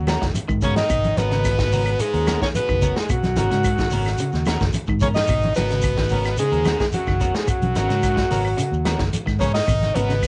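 Funky and intense, this afrobeat excerpt in G# minor moves at 109 BPM over a single G#m11 chord, with a breathy, whispered alto saxophone carrying the melody up front, colored by cassette tape, plate reverb and analog delay, while a brilliant, punchy trumpet with scooped notes and a growling, raspy baritone saxophone add quiet second lines. A slightly broken-up, twangy guitar plays arpeggios in the background, a clean guitar with analog chorus adds picked stabs, and a round, dark fingered bass anchors the low end. A vintage drum kit with a tight kick joins at 0.1 seconds alongside damped congas, woody claves and a grainy shekere, all in a booth with moderate ambience on a home cassette recording with a rolled-off top.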